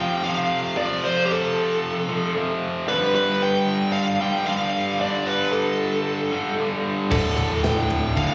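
Heard as a live gig through the venue's PA with a light recital-hall reverb, this heavy, driving hard rock excerpt opens with a dark, overdriven lead guitar carrying the melody up front over a tight, distorted rhythm riff, both touched by slapback echo as the chords move from F to G5. At 7.1 seconds a cranked stack guitar enters low in the background alongside a round, punchy picked bass and a big acoustic drum kit with a boomy kick, a medium-tuned snare and bright cymbals, landing the band on D5.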